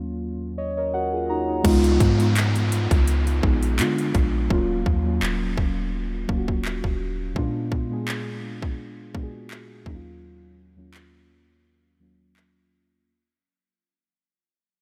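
Contemporary R&B with a sensual, late-night mood, this piece opens on muted, felt-like synth keys, intimate and warbling with a vintage, chorused tone, as a filter sweep moves through their dark chords. At 1.6 seconds a round, deep 808-style bass, a downlifter and an overdriven trap drum kit arrive, its hard-clipped kick, metallic hats, handclaps and crash sitting up front. The bass drops out at 7.3 seconds and a break begins at 10.2 seconds while the passage fades out, all steeped in a huge, dreamy reverb.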